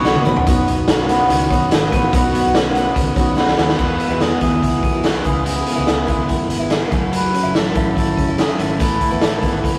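A rough rehearsal-room recording with moderate studio reverb frames this bright, nostalgic slice of jangly indie pop at 144 BPM in straight 4/4. A shimmering, octave-doubled twelve-string acoustic guitar with audible finger squeak and a slightly broken-up electric guitar playing compressed arpeggios through a small old amp sit over a round, foam-muted fingered bass in the background. Up front, a gritty, saturated garage drum kit with a punchy kick opens with a fill and rolls into another at 3.4 s, and a reedy, breathy melodica carries the melody from 3.8 s as the chords move from Badd9 through Eadd9, C#m7 and F#m7 to Aadd9.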